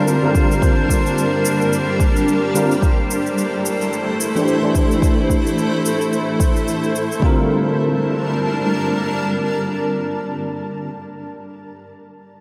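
Meditative and hypnotic, this fragment of an organic downtempo piece sits in a dreamy mix soaked in lush hall reverb, with a gently swung sixteenth-note feel in 4/4. A bell-like tine electric piano carries the accompaniment, its clean, direct tone treated with ensemble chorus, sidechain pumping, a diffuse ambient delay and a low-pass filter sweep across the opening 7.2 seconds. Alongside it, a granular cloud pad placed up front holds sustained chords that sound blurred and evolving, its detuned unison voices also shaped by sidechain pumping, while a drifting glass-harmonics texture hovers in the background on a single held note. The rhythm comes from a deep, overdriven electronic kick drum placed up front and a quieter produced cabasa, both set in studio reverb. The harmony moves between Gm7 and Am7, and once the percussion and the glassy texture drop out around 7.2 seconds, the piano and pad ring on, the piano lasting until 10.9 seconds.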